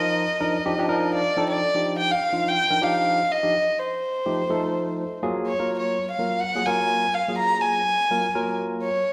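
Jazz at 125 BPM with a light sixteenth-note swing, funky and slick, cut from a longer piece, where a dark, woody bowed violin with vibrato and sul tasto tone carries the melody up front over a bright, barky tine electric piano that adds a fill from 0.2 to 1.6 seconds, the two playing live in one room with a wet large-studio reverb as the chords move from Ebmaj9 to F7 to Gbmaj9.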